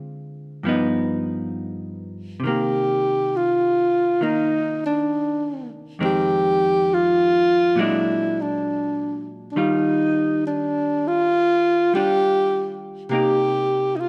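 A breathy alto saxophone carries the melody in this romantic, late-night jazz ballad, entering at 2.5 seconds with a mellow subtone, soft attack and light vibrato, close-miked and up front as the solo voice. Beneath it, a vintage hollow-body electric jazz guitar plays clean, picked accompaniment with a dark tone, starting alone at 0.0 seconds and continuing to the end at 14.1 seconds. The tempo is a slow 68 BPM in 4/4 with a swung eighth-note feel, set in C minor. The harmony opens on Dm7b5 and Gaug7 before settling into Cm9, then moves through Fm7, Bbaug7 and Ebmaj9 to close on Cm7. A moderate echo chamber reverb surrounds the recording, which is cut from a longer piece.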